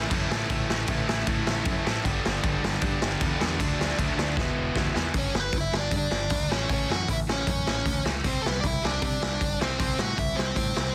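A straight 4/4 punk rock drive at 155 BPM opens this rowdy, energetic excerpt, with a raw, gritty garage drum kit up front, its punchy kick and medium-tuned snare sounding saturated in a small room, and a drum fill from 4.4 to 5.1 s. Three picked guitars sit behind it: a biting overdriven riff and a double-tracked, compressed fuzz guitar that both stop at 5.1 s, and a bright distorted guitar that carries on throughout, all over a growling, overdriven picked electric bass. From 5.2 s a dark, smooth lead guitar with tape echo takes the melody up front, and the whole is pressed into a dense, heavily limited modern master with light reverb.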